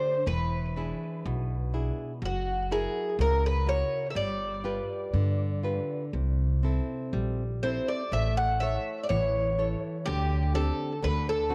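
A dark, boxy twelve-string acoustic guitar carries the melody up front, its picked, octave-doubled lines shimmering through a tape echo in this mournful, passionate fado-style ballad, heard as a short cut from a longer piece. A nylon-string guitar supplies warm, fingerpicked classical accompaniment, while a woody pizzicato upright bass with steel strings joins at 0.3 s and sits prominently beneath. The rubato feel drifts through E7, F#7, G7, C6 and A before settling on D7sus4 and D5, all set in a small room with light reverb.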